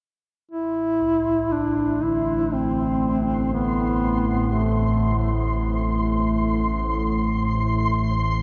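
A mellow duduk sings an up-front, folk-style solo with vibrato and scooped notes from 0.5 to 5.5 seconds, soon joined by an evolving sawtooth analog drone shaped by chorus, phaser and a filter sweep, a grainy, flickering granular texture and very quiet, bronze-toned gamelan-type bossed gongs playing arpeggios, making this cut from a longer dark ambient drone piece in A minor at 60 BPM feel cavernous and unsettling within a vast cathedral reverb.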